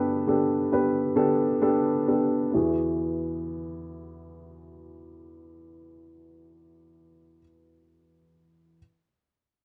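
A dry, close 1970s-style studio sound with light reverb frames this tender, heartfelt pop fragment in E major at 64 BPM, where a dark, mellow, woody upright piano sits up front as accompaniment from E2 to B4, slowing down through the opening 2.5 seconds on a Gadd9 chord before settling onto Eadd9.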